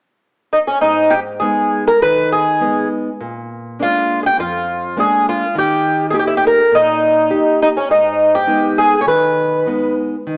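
Through the warble and pitch drift of worn cassette tape and an AM-radio tone, this passionate, mournful fado-style ballad excerpt in G# harmonic minor drifts rubato at 102 BPM in 4/4, with a boxy, shimmering, octave-doubled fingerpicked twelve-string guitar up front carrying the melody with audible finger squeak and a swing feel from 0.5 seconds, while a full-bodied, fresh-stringed nylon-string guitar supplies deep classical fingerpicked accompaniment through G#m, A#7 and D# until 10.4 seconds, all set in a moderate recital-hall reverb.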